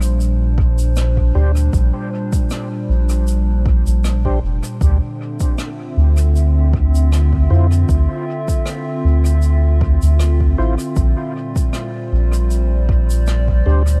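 A gently swung groove in four carries this hazy, spacious ambient dub passage, with a shaker and rim click sitting distant and roomy under a dub echo, and an overdriven electronic kick arriving at 0.6 seconds with a deep, layered punch. Beneath it, a round, up-front sub bass holds the low end with a soft, sustained tone. A warbling, nostalgic pad drifts through sustained chords, moving from Bb69 to Dm9 at 4.8 seconds and back again, its detuned, lo-fi colour thickened by chorus and its own reverb. From 1.4 seconds a mellow tonewheel organ adds dark, lightly overdriven stabs, turning through a slow rotary speaker with chorus vibrato, a low-pass filter and dub echo. A small room ambience surrounds the mix, and the music is cut from a longer piece.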